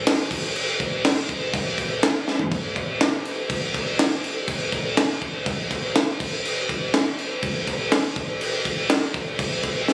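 A crisp, up-front fusion drum kit carries this intricate, restless rock fragment at 122 BPM in a straight 4/4, its high-tuned snare, tight kick, toms and bright crash cymbals sounding saturated and gritty in a small, pumping room, with a drum fill at 2.3 seconds, all captured on a phone with club reverb and compression.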